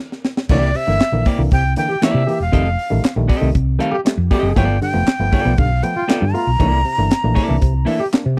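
A dry, close 1970s-style studio sound with small-room ambience frames this strutting funk fragment: a drum fill and band accent open onto a tight kit with high-tuned snare, handclaps and crash, a dark, round hollow-body fingered bass up front, a breathy, chiffy jazz flute melody, clean semi-hollow guitar, muted, stringy clav stabs through a combo amp, and a clear, punchy trombone second line entering at 1.9 s, all over C9, F9, G9 and C13 chords.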